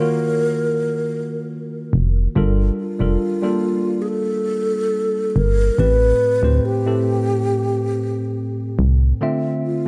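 Contemporary R&B in G minor at a slow 70 BPM, this late-night, moody fragment drifts through Ebm9, Gm9, Am9 and Dm9 chords on a worn, slightly out-of-tune tine electric piano with a clean, direct tone. A breathy, hollow alto flute carries the melody with vibrato, a crisp attack and a touch of delay. At 1.9 seconds a punchy, round FM bass enters, dark and up front, with a fast attack that decays, all set in a small room ambience.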